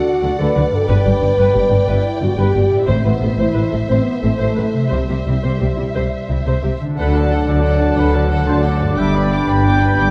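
A dark, warm production sits in a moderate scoring-stage reverb, giving this cinematic excerpt an adventurous, heroic sweep at 119 BPM in a lilting 12/8, centred on D mixolydian. From the opening, lush bowed violins carry a vibrato-rich melody with a soft attack and smooth top, while a second violin line sings beneath, woody violas murmur in the background, a French horn section holds sustained chords, and a very quiet concert harp rings out fingerpicked arpeggios. At 0.2 seconds an up-front, clear double bass section and a lush cello section settle in on the bass. A round, close timpani figure on soft mallets lands at 2.9 seconds as the harmony moves through D, G, Amadd9 and C. At 7.0 seconds the winds and brass join: a pure, straight-toned flute group with lifted highs, a distant oboe, a very quiet clarinet and a mellow trombone section add second lines and chords, while a dark, punchy trumpet section drives tight stabs over the returning D and G chords.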